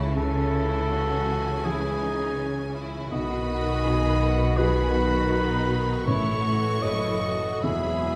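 Hopeful and moving, this short cinematic film-score passage for orchestra unfolds at a rubato 81 BPM in 4/4, cut from a longer piece and lasting about 8.2 seconds. A lush violin section carries the melody high above, while a mellow solo cor anglais sits up front with a second line and a further violin section adds another smooth, close line beneath it. In the background, a dark, felt-muted upright piano and a vibrato-rich viola section provide accompaniment, and a very quiet concert harp adds ringing, thumb-plucked arpeggios. A focused cello section and a bowed double bass section anchor the bass as the harmony moves from C#m through B and A to a closing Eadd9 at 7.6 seconds. The ensemble sits in a reverberant recital-hall space that gives the orchestra a spacious, church-like bloom.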